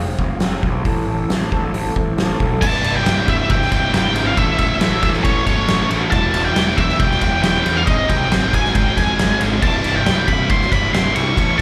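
A twangy, lo-fi electric guitar through a small old amp opens with picked arpeggios, colored by phaser and slapback echo, over a growly fuzz bass. An oversized, low-tuned drum kit joins at 0.2 seconds. Cut from a longer quiet-loud alternative rock piece, the music feels anthemic and restless, heard live through a club PA with light reverb. At 2.6 seconds the arpeggio guitar stops and the heavier section arrives: an octave-fuzz lead guitar carries the melody up high, while a scooped high-gain guitar and a sludgy overdriven guitar play riffs in the background, each with slapback echo. The drums sit up front in a pumping stone room, with a fat snare, a punchy kick and gritty saturation, and the bass continues underneath to the end. The chords move from Fm and Am into C, A, Em and Ab before returning to C.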